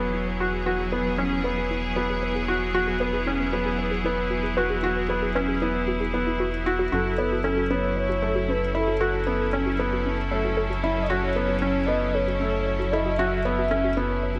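A straight 4/4 pulse at 115 BPM carries this tender, luminous electronica excerpt in E major, tuned to A4 = 437 Hz, with the harmony moving from Eadd9 to F#m7 at 6.9 seconds. A felt-muted upright piano plays a soft, intimate riff with audible action noise through a low-pass filter and delay. Alongside it are clear, up-front bowed strings holding sustained chords, a round, deep analog bass, and a warbly, lo-fi pluck whose chorused, delayed arpeggios stay in the background under a filter sweep. At 6.9 seconds a velvety, chorused synth lead enters with the melody, and the whole excerpt sits within a moderate, lush hall reverb.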